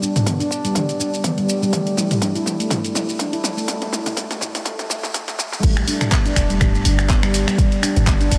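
A dreamy, reverb-soaked mix with a huge ambient tail frames this spiritual, driving afro house passage, cut from a longer piece. Up-front handpan arpeggios ring with a meditative nitrided-steel tone, pumping from sidechain and trailed by diffuse delay. A tape-warm deep house kit of hi-hat, shaker, finger snaps, handclaps, toms and crash drives a filter-swept build-up and drum fill, with the deep electronic kick joining at 0.3 seconds, and at 5.6 seconds the drop lands as a boomy, sine-toned 808-style bass with a noise layer enters, pumping beneath the groove.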